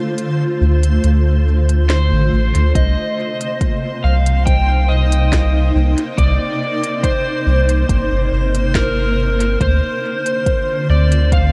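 A hazy, spacious ambient dub excerpt at 70 BPM in C dorian opens with a cloudy, blurred granular pad holding sustained chords under lush chorus and reverb, a reversed, dreamy swelling texture in the background and a woody snare with crisp hats in dub echo, while a round, up-front sub bass enters at 0.6 seconds, an overdriven slide guitar melody with dub echo arrives at 1.9 seconds, and a deep, tape-warm electronic kick lands at 2.8 seconds as the chords move from Dm7 to Cm7 and back to Dm7.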